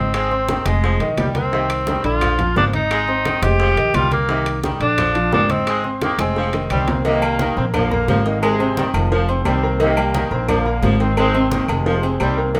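A moderate studio reverb surrounds this driving, fiery salsa excerpt in a straight 4/4. A tenor saxophone leads up front with a clear, vintage tone, soft attacks and scooped notes, and at 6.7 s a punchy, tight trombone section with light vibrato and a smooth top takes over the melody. A drum fill carries the music into a new section at 7.1 s. Beneath the lead, a polished, present baby grand piano supplies accompaniment, while a dark, woody and thumpy pizzicato upright bass sits up front, and a bright saxophone section adds a second line in a low register. Further back, saturated, low-tuned congas, tight, high-tuned bongos and cowbell with soft hands, and ringing metal-shell timbales with agogo bells drive the groove, with very quiet, dry wooden claves tucked in close.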